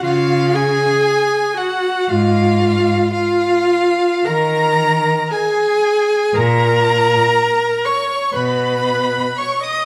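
In a slow 4/4 that drifts between 51 and 61 BPM with a tender rubato, this classical string-quartet passage unfolds as a romantic slow movement, cut from a longer piece and tuned to A4 = 442 Hz. Four bowed players carry it, each with vibrato: a full-toned first violin sings the melody from the background, while a clear, focused second violin shadows it in the same high register as a second line. The viola supplies a smooth, even accompaniment, and the cello grounds the texture with a low bass line. Both sit up front in the balance yet carry a slightly distant quality. The harmony moves from C# through D#5 at 4.3 seconds to a Badd9 at 8.4 seconds, and the cello drops out at 9.2 seconds just before the others finish. A moderate recital-hall reverb lends the quartet an intimate, rounded sense of space.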